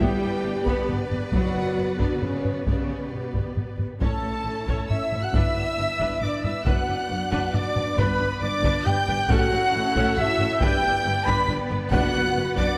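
Heavy-stick taiko drums, closely captured, drive this epic, dramatic orchestral film-score passage in a straight three-beat metre, cut from a longer piece. Above them a lush violin section carries the melody with focused vibrato and a smooth top, while a darker, woody chamber violin section adds a second line in the background and a viola section with soft attacks and portamento fills out the accompaniment. Mellow French horns and a distant string section hold sustained chords, anchored by a rich cello section and woody double basses on the bass. At 4.0 seconds a mellow, vintage-toned trumpet section enters with tight stabs and a very quiet, airy flute section joins with a second line, as the harmony moves through G, B minor over F sharp and A. Timpani with calf heads and medium mallets sound briefly in the background near the start and again at 11.9 seconds, and the whole ensemble sits in a concert hall with a 2.2-second reverb tail.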